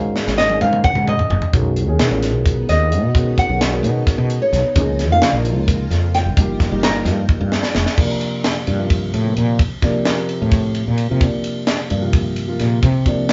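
Electric jazz fusion in a straight 7/8, slick and intense, where a bright, fingerpicked nylon-string guitar solos up front until 7.0 seconds over a dark, mellow grand piano, shimmering vintage string-machine violins in the background, and a tight funk kit with a high-tuned snare and drum fills, before a growly, woody fretless bass takes its own solo from 8.0 seconds, all in a live-room sound with moderate reverb.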